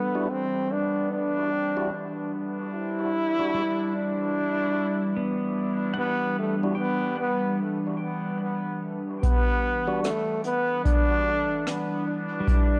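A slow 74 BPM pulse in 4/4 with a swung sixteenth-note feel carries this spacious, deep ambient dub piece in E minor, cut from a longer work and resting on an Em9 chord. A bright, distant trombone with light vibrato sings the up-front melody through dub echo, while a warbly, nostalgic tape-like pad holds mellow sustained chords with chorus and its own reverb. A twangy pedal steel guitar, played with fingerpicks and slide, spins arpeggios roughened by vintage 12-bit sampler grit, a low-pass filter and dub echo, with a filter sweep on it through the opening 9.2 seconds. A fat, lightly overdriven tonewheel organ adds very quiet stabs with key click and fast rotary speaker. After a break from 7.6 to 9.2 seconds, a deep, analog electronic kick drum arrives up front alongside a soft jazz brush kit of hi-hat and rim click in echo, all set in a moderate echo chamber reverb.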